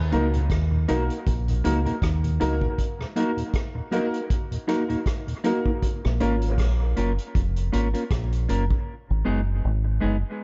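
A deep, round fingered electric bass opens this heavy, spacious dub reggae excerpt in Eb minor, tuned slightly sharp at A4 = 444 Hz. The band joins almost at once at a slow 79 BPM in 4/4 with a gentle sixteenth-note swing. A vintage drum kit with a punchy kick, hi-hat and rim click sits up front beside the bass, the kit sounding natural and warm in a small room and the bass dark and direct. A clean, fingered electric guitar carries subtle chorus and dub echo, while a worn, woody upright piano, slightly detuned with long sustain, adds echoing stabs. Far behind them, a mellow, flute-like tonewheel organ turns through a slow rotary speaker with vibrato. A break arrives at 2.8 seconds, and the harmony moves from Ebm to Bbm at 5.8 seconds just after the organ falls away, with the piano dropping out shortly after. The drums stop at 8.9 seconds as the chord shifts to Abm, leaving bass and guitar to ring into an echo-heavy mix with a dulled top end.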